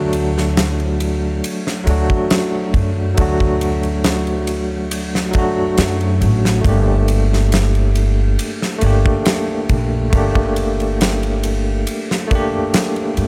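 A slow, straight 4/4 groove at 69 BPM sets up this hypnotic, dark trip hop passage, a 13.3-second section cut from a longer piece. The huge arena drum kit comes in at 0.1 s with a punchy kick, fat snare and bright ride cymbal, sitting up front in a hall-like space. Underneath, an acoustic upright bass played pizzicato gives a woody, thumpy low end on steel strings, ranging from G1 to G2. A barky tine electric piano carries the accompaniment, its bell-like, clean tone placed up front and coloured by tremolo, vintage 12-bit sampler grit and tape echo. The harmony rests on D before moving to Gmadd9 at 6.6 s, and a small room ambience surrounds the whole.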